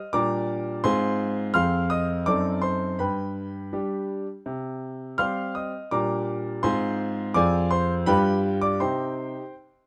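A clear, natural concert grand piano sits up front in light reverb, its deep bass grounding this brief, elegant yet restless classical-period sonatina cut from a longer piece in C minor, played solo with rubato in 2/4 around 83 BPM across a range from F2 to F6, moving through Gm/Bb, Fm/Ab and F#dim7 to G before settling on Cm at 4.5 seconds, then cadencing again through G7 to Cm at 8.8 seconds.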